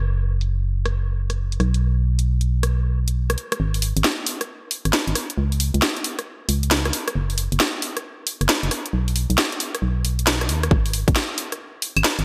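UK garage in a two-step, soulful and bouncy, with a 65% swing on the sixteenths, cut from a longer piece that opens on a filter sweep before building from 3.6 seconds onward. A dark, hollow, organ-like FM bass with a fast, percussive attack sits up front from the start, joined at 0.4 seconds by a layered electronic garage kit of claves, rim clicks, warm hats and a cracking snare, thinned by high-pass filtering and gated reverb. A tight electronic kick punches in briefly at 10.7 seconds, all within a bright 1980s-style digital sheen with light reverb.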